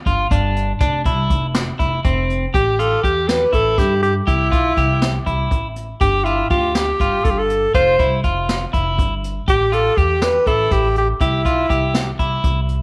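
Intricate and driving, this progressive instrumental in A minor moves in a straight 7/8 at 242 BPM in eighths, with a slightly broken-up electric guitar picking up-front arpeggios, a woody pizzicato upright bass, and a distant, roomy brushed drum kit with a boomy kick and rolled-off top, joined at 2.5 s by a punchy, forceful alto saxophone playing a smooth-topped, vibrato-laden jazz solo, all set in moderate spring reverb and studio ambience.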